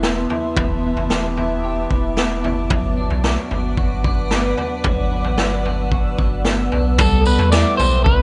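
This blissful, dreamy dream pop excerpt at 112 BPM opens with a blurred, evolving granular cloud pad holding sustained chords and an electric guitar at the edge of break-up picking compressed arpeggios through lush chorus and delay. A round sine sub bass and a gritty, saturated garage drum kit sit beneath them, the kit's punchy kick, snare, tambourine and toms up front in a small room. The chords move from Cmaj7/E to Gmaj7 and then to Cmaj7 at 7.0 seconds, where an up-front electric slide guitar played with fingerpicks enters with a short melody trailed by delay, and at 7.2 seconds a delicate, bell-like small celesta adds a sweet touch in the background.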